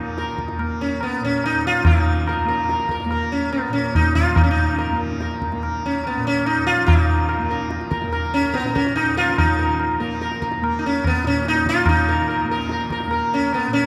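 A straight 3/4 pulse at 144 BPM carries this longing, meditative Hindustani classical passage in raga bhairavi on Bb, cut from a longer piece. A softly plucked tanpura drone shimmers from 0.0 s, and at 0.2 s an up-front, plectrum-plucked sitar enters with a round, buzzing melody haloed by sympathetic strings, alongside a close, high-tuned tabla that rings. Everything sits in a church or concert-hall acoustic with a wet, cathedral-like reverb, and the music moves into a new section at 9.4 s.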